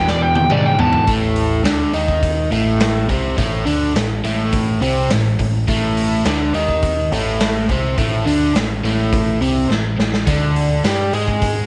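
A raunchy, swaggering blues rock and southern rock cut at 104 BPM opens with an overdriven slide guitar solo, played with fingerpicks and soaked in tape echo, over very quiet, gritty tonewheel organ chords with key click and slow rotary speaker, both stopping at 1.1 seconds as a crunchy, double-tracked guitar riff, a growling, round overdriven bass and a saturated garage drum kit with a punchy kick and a pumping stone-room sound drive on through a drum fill at 9.7 seconds, all set in moderate spring reverb with a rolled-off top.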